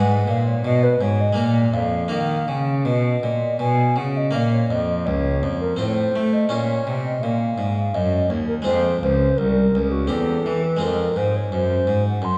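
A grave, flowing baroque-style sonata movement with continuo in triple time, taken from a longer piece. A hollow, pure wooden flute carries the melody with a tongued attack and vibrato, sounding distant, while a bright, plucked Flemish-style harpsichord with a single set of strings accompanies and a solo bowed cello with a reedy gut-string tone and light vibrato plays the bass line in period style. All three play throughout, wrapped in the wet reverb of a recital hall that places the listener further back in the room, and a second phrase begins at 4.3 seconds.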